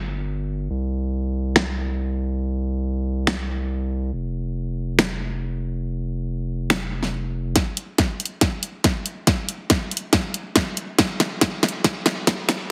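Lush and dreamy, this future bass excerpt moves at 140 BPM in 4/4 with a half-time feel, cut from a longer piece. A deep, thick saturated sub bass sits up front from the start, its sine tone sustained with a fast attack and pumping under sidechain until it stops at 7.5 seconds. From 1.6 seconds a layered, produced pop drum kit brings finger snaps, hi-hat and a fat, low-passed snare forward in a small room, with a filter sweep shaping the drums through the opening stretch. At 7.6 seconds a punchy electronic kick joins for a build-up and drum fill that carries the passage to its close. The overall sound is heavily compressed and radio-like, high-passed and given a light reverb.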